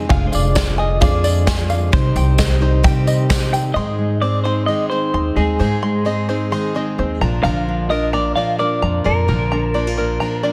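A dense, heavily limited modern master with light studio reverb frames this stirring, wistful indie folk excerpt, a building arrangement at 130 BPM in a straight 4/4. Up front, a woody, thumpy pizzicato upright bass anchors the low end, while a natural country drum kit with a punchy kick and medium-tuned snare, along with a jingly tambourine, drives the opening over Ddim/F and Cm chords. Beneath them sit a very quiet, boxy felt-muted upright piano with a dark, intimate tone and a very quiet tonewheel organ, fat and lightly overdriven, with key click and a slow rotary speaker. Throughout, a picked plugged-in steel-string acoustic guitar and a twangy, plunky open-back banjo playing arpeggios fill the middle and top, as a clean, compressed electric guitar carries the melody through tremolo and tape echo. By 3.8 seconds the drums, tambourine, organ and piano have dropped away, and a fingerpicked steel-string acoustic guitar with an auditorium character joins as the harmony moves from Ab to Bb.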